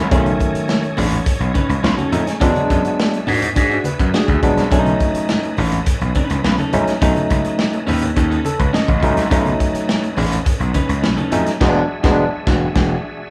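A gritty, overdriven slap bass drives this strutting, energetic funk excerpt at 104 BPM, joined by a barky, up-front tine electric piano that stabs over B9 and E9 chords and plays fills at 3.6 and 8.2 seconds. A crunchy, saturated breakbeat kit with dark cymbals and a tight kick, a slightly broken-up electric guitar through a small old amp, thick low-tuned congas far beneath, and a full tonewheel organ holding sustained chords in the background through a slow rotary speaker with chorus vibrato complete the lineup. The band sounds live in one large studio room with moderate reverb, hitting a group accent at 11.6 seconds.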